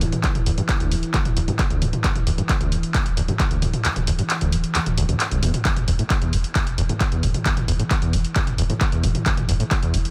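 A straight 4/4 pulse at 133 BPM drives this intense, industrial peak-time techno, tuned to A4 = 439 Hz. An overdriven, punchy analog kick drops out from 3.8 to 5.7 seconds, while a layered electronic kit of handclaps, hi-hats and toms sits up front with the air of a large room in an otherwise mostly dry mix. A squelchy, gritty sawtooth acid riff, distorted and thickened with lush chorus, pumps with sidechain alongside a round sine sub bass, over a dark, detuned, wave-folded pad drone set deep in the background, the harmony resting on Dsus2 before giving way to an unharmonized stretch at 5.7 seconds.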